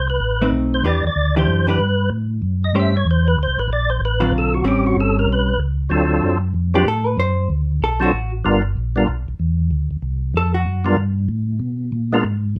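A swinging 189 BPM groove in 4/4 drives this bluesy soul jazz organ trio excerpt in D mixolydian, cut from a longer piece. A fat, lightly overdriven tonewheel organ with key click and third-harmonic percussion carries the melody through slow rotary speaker and chorus vibrato, taking a solo for the first 5.9 seconds, while a second, mellow and round tonewheel organ holds down a dark, clean bass line. A compressed, picked hollow-body jazz guitar comps up front from 0.4 seconds and then solos from 5.9 seconds over altered dominant chords such as D7#9 and G7#9, all set in light reverb.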